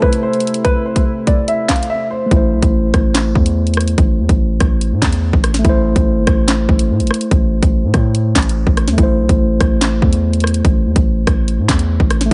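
A hard-hitting 808-style bass, punchy and heavy with a noise layer and fast attack, drops in at 2.3 s after a brief break, anchoring this cold, ominous drill excerpt in A minor at 144 BPM with a half-time feel. Up front, an electronic drum kit drives throughout with a hard-clipped kick, sharp snare, bright hats, rim clicks and handclaps, while a mellow tine electric piano plays accompaniment through built-in speakers. The opening seconds belong to a dark, worn baby grand carrying the melody with delay and audible action noise, over soft sustained chords from a brass ensemble with light vibrato, both stopping at 2.3 s, all in a dry mix.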